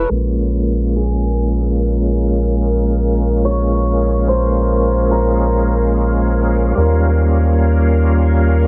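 A straight 4/4 groove carries this brooding, hypnotic trip hop excerpt, anchored by a deep, round dub sub bass sitting up front. A thick, overdriven tonewheel organ with slow rotary speaker, chorus vibrato, tremolo and tape echo fills the middle, while a bowed string section with a soft attack floats in the background with 12-bit sampler grit, and a filter sweeps across both the organ and the strings. A bright, shimmering hammered dulcimer carries the melody through dub echo and its own sampler grit until 7.9 s, over a Bbm7 that moves to Eb7 at 6.8 s, the whole mix steeped in light reverb, vinyl crackle and heavy echo.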